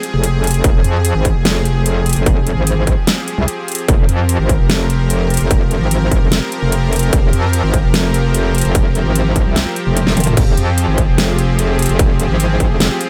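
A metallic, distorted wobble bass dominates this menacing heavy dubstep excerpt, its FM growl thickened with chorus and overdrive and sitting up front over a half-time groove. A layered electronic kit drives it with a huge snare, metallic hats, crash and toms, joined by a distorted kick that drops out from 9.6 to 10.4 seconds while a drum fill lands at 10.0 seconds. Underneath, a lush, detuned supersaw pad holds a sustained minor chord, pumping against the sidechain in a digital ambience.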